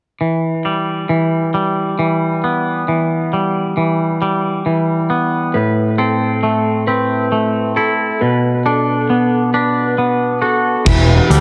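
Roomy and spacious, this melancholic, brooding post-rock excerpt opens with a twangy, clean electric guitar playing arpeggios through analog delay over Em, Amadd9 and Bm chords. A dark, slightly broken-up second guitar with harmonic tremolo joins at 5.5 s. At 10.9 s a punchy fuzz bass and a loose indie drum kit with dark cymbals arrive as the harmony lands on Emadd9, and an ethereal, warbling pad follows at 11.0 s.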